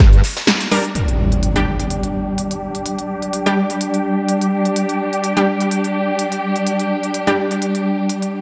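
Bass house with an aggressive, bouncy, lightly swung feel: a punchy electronic dance kit of crisp hats, rim clicks and snare drives from the start beside a very quiet acoustic arena kit of ride and fat snare that drops out by 0.8 s, bold detuned sawtooth orchestra-hit-like stabs with a bright filter pluck, built-in reverb and digital delay cut through up front, and a smooth, bowed string section with vibrato holds sustained chords under a filter sweep from 1.0 s, when an electronic impact also strikes, the mix sitting in a lush hall reverb with small-room ambience.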